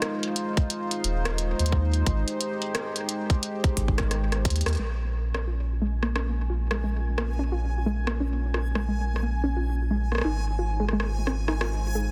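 Opening on a dark, smooth analog pad with chorus and 12-bit sampler grit alongside a glitchy drum kit of clicky hats and rim clicks with tape echo and a softly clipped snare, this eerie, intricate IDM fragment at 88 BPM, with a swung 16th feel in Bb dorian, adds a tight, up-front electronic kick from 0.6 seconds and a deep, round sine sub bass, then, after a drum fill, a warbling, lo-fi sawtooth pluck enters at 4.8 seconds with chorus, tape echo and a filter sweep, joined at 5.9 seconds by a faint, bright, reversed granular texture that swells and pumps in its own reverb, the mix sitting in light reverb on a dense, heavily limited master.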